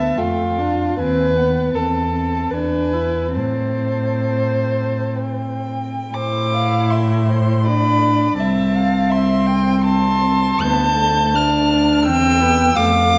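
All four strings of a quartet sound together from 0.0 s in this slow, serene and lyrical romantic movement, an excerpt cut from a longer piece in A minor and 3/4, moving with rubato between 60 and 86 BPM and tuned to A4 = 445 Hz. The first violin carries the melody high in its range, bowed sul tasto with light vibrato, a soft attack and a shadowy, smooth-topped tone that feels intimate and close. Beneath it, the second violin's line is woody and up front, played with vibrato. The viola gives warm accompaniment with an airy bow, while the cello's bass is dark, close and prominent. The harmony drifts from D minor through G#7#9/D# and E7 to A minor, and the opening phrase returns at 6.1 s before the music turns back to D minor at 10.6 s. A moderate recital hall reverb surrounds the players, and the sound is mellow, with its highs rolled off above 7.7 kHz.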